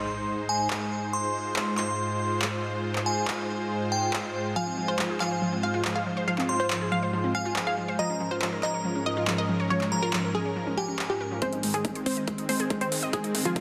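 Uplifting trance at 140 BPM in Ab major, soaring and bright, where a lush supersaw pad with sidechain pumping holds sustained chords under a crystalline FM bell line with chorus and digital delay, big-room dance drums bring overdriven handclaps and metallic hats in near the start, two detuned unison plucks carrying the melody and arpeggios through dub echo join at 4.6 seconds, and a punchy overdriven electronic kick from 11.4 seconds and a very quiet fat analog bass from 11.6 seconds drive the build-up in a dense, heavily limited mix with moderate stage reverb.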